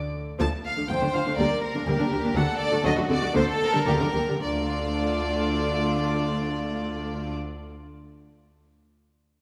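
In a straight 2/4 pulse at 109 to 123 BPM, this quick classical-period movement for string orchestra in D minor presses forward with dramatic urgency, then slows from 1.9 seconds through the end of its opening phrase. A dark cello section and a rich double bass section anchor the low end from 0.0 seconds, the cellos sitting in the background while the basses hold a low D. At 0.4 seconds the first violins enter up front with the melody, their pure, floating, distant tone played sul tasto with a soft attack. Beside them the violas add lush, woody accompaniment with vibrato, and shortly after, a warm, close second violin section traces its own line. The harmony moves from D minor to G minor, brightens briefly to D major, returns through G minor and settles back on D minor as a contrasting passage begins. A wet concert hall reverb wraps the ensemble in a spacious glow, and the fragment is clearly cut from a longer piece.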